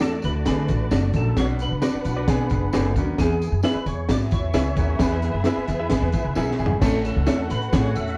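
A wet, roomy live-band sound with the soft grain of cassette tape carries this joyful, uplifting excerpt of uptempo 1960s-style soul at 132 BPM in A major, moving from D through Bm and E before landing on A at 6.8 seconds. A mellow, percussive tonewheel organ with chorus vibrato and a slow rotary speaker carries the melody, while a lush, distant violin section adds an expressive second line with portamento, and a natural grand piano and bright, compressed clean electric guitar stabs fill the middle. Underneath, a woody upright bass sits up front with a gritty, saturated breakbeat kit featuring a high-tuned snare and a drum fill at 6.4 seconds, a jingly tambourine shimmers in the background, and a growling, raspy baritone saxophone riff enters at 1.1 seconds.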